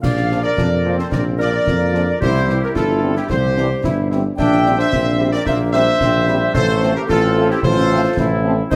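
A spirited, rousing military-style march for wind band in F major, moving at 110 BPM in a straight 2/4, cut from a longer piece and lasting about 8.8 seconds. The trumpet section carries the melody with a punchy, tight attack and light vibrato, sounding distant in the room, while an airy, hollow small flute group in the background and a warm, distant woodwind section trace second lines. Up front, a mellow tuba anchors the bass, and a concert snare drum, concert bass drum and clash cymbals with a dark cymbal colour keep time from behind the ensemble. A very quiet French horn section adds accompaniment from 0.3 seconds, and a clear trombone section holds sustained chords from 0.6 seconds. The harmony moves from Bb to C, then C7/Bb to F/A, all set in the moderate bloom of a recital hall.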